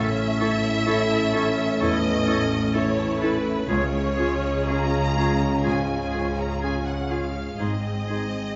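Set in moderate scoring-stage reverb, this uplifting, hopeful cinematic film cue moves with rubato freedom as a clear, lush violin section carries the melody over a distant second violin section, a vintage-toned oboe, airy flutes and a very quiet clarinet, while a dark grand piano and smooth violas accompany, mellow French horns hold sustained chords, a bright harp rings out arpeggios, warm cellos and expressive double basses anchor the bass, and faint timpani appear from 3.7 to 5.1 seconds.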